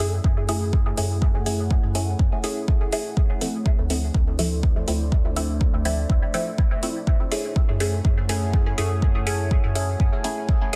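A steady straight 4/4 pulse at 123 BPM drives this hazy, cavernous dub techno excerpt in F# minor, where an up-front overdriven kick and metallic overdriven hi-hats frame muted, detuned sawtooth chord stabs soaked in phaser, cassette tape grit and dub echo, a round, soft sub bass and a moody, chorused ambient pad set in the background, with the stabs, bass and pad pumping together through F#m7 and Dm7 in a dense, heavily limited mix with light reverb.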